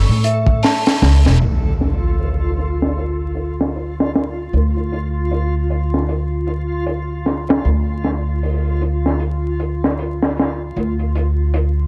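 A bell-like celesta arpeggio with lo-fi sampler grit and delay opens this cinematic, smoky trip hop excerpt in D minor over an A chord, beside a woody, growly pizzicato upright bass and a dreamy, reversed granular texture, before a dark, saturated breakbeat kit with a punchy kick and high-tuned snare enters at 0.2 seconds, and an electronic impact lands at 1.4 seconds as the harmony moves to D minor, all at a swung 77 BPM in a small room under vinyl crackle.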